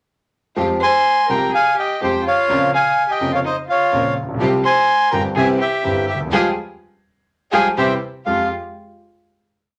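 A passionate, tense tango in F minor at 125 BPM with a rubato feel: a clear concert grand piano lays down a deep-bass milonga accompaniment from 0.6 s while a focused studio string section adds bowed stabs in the background in the same milonga rhythm. An airy, dark bandoneon carries the motif-based, song-like melody up front from 0.8 s, partly doubled in thirds, joined by a single gut-string violin playing a nasal, lightly vibrato second line with octave doubling in a period style. A band accent from 6.3 s leads into a final F minor add9 chord at 8.3 s, all set in a short, wet studio reverb.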